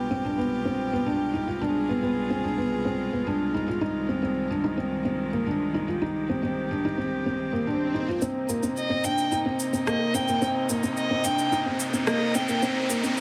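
Piano and strings electronica in C minor at 109 BPM, moving and melancholic, where a felt-muted upright piano with audible action noise plays a soft, delayed riff over sustained, airy sul tasto chords from a close, low-pass-filtered string quartet, all bathed in huge ambient reverb, until an electronic swell at 7.4 s gives way at 8.2 s to a build-up with a riser, a filter sweep on the quartet, an overdriven electronic shaker and rim click, and a barely audible round analog bass, while from 8.8 s an expressive solo violin adds a vibrato-laden, portamento melody with delay in this excerpt from a longer piece.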